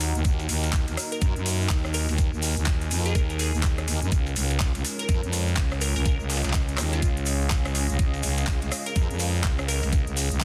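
A growling, thick FM bass sits up front with tube saturation and sidechain pumping, driving this aggressive, swaggering bass house excerpt alongside a knocking electronic kick that enters at 0.2 seconds, tape-tinged garage claps, metallic hats and rim clicks, a very quiet gritty sampler-style kit of hi-hat, ride and snare, a grainy egg shaker, a dark, moody analog pad holding Ebm and Db chords and a cloudy granular pad, both in the background, and a glassy wavetable pluck with chorus and dub echo drifting in from 1.1 to 9.8 seconds, all within a dense, heavily limited digital ambience.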